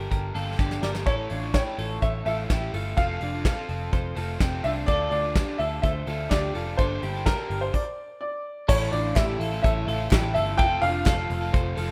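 A rough home-demo mix with light reverb and small-room ambience frames this wistful, restless jangly indie pop excerpt, where a clear, woody, slightly detuned upright piano carries the melody over crunchy overdriven guitar, bright, twangy twelve-string electric arpeggios through analog delay, a dark, round foam-muted picked bass and up-front brush drums with a punchy kick, fat snare and an early fill, breaking for a stop at 7.7 seconds before a mellow, organ-like string pad with ensemble chorus enters at 8.7 seconds and a very quiet, crisp group handclap joins at 9.2 seconds.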